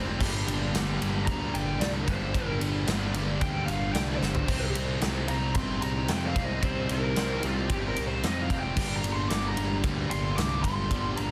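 Cathartic and brooding, this excerpt of quiet-loud alternative rock in C minor moves at 112 BPM in a straight 4/4 over Gm, Cm7 and back to Gm. A punchy, up-front acoustic drum kit with bright cymbals rings in a big room and plays a fill at 4.2 seconds. A growly, overdriven fuzz bass anchors the low end beneath three picked guitar riffs: a very quiet, double-tracked distorted part, an equally faint thick fuzz part, and a bright, tight distorted one in the background. A lo-fi lead guitar, overdriven and trailed by digital delay, solos from 1.3 seconds. A very quiet, mellow vintage string machine of violas holds soft-attack sawtooth chords with ensemble chorus and a moving notch, all inside a dense, heavily limited modern master with light reverb.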